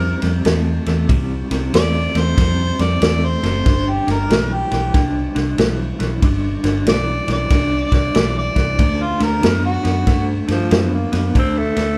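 A swung 4/4 shuffle at 94 BPM drives this laid-back, rollicking electric blues, played by a band live in one room with a moderate large studio reverb as the chords move from C to G to D. A vintage drum kit sits up front with a punchy kick, dark cymbals and a rolled-off top, alongside a round, foam-muted fingered bass and a lo-fi, slightly broken-up guitar riff with tremolo through a small old amp, while a distant, roomy harmonica with overdrive carries the melody in scooped notes and light vibrato until 10.3 s. At 10.5 s a raspy, growling tenor saxophone steps up front with a short jazz-styled second line as this fragment of a longer piece cuts off.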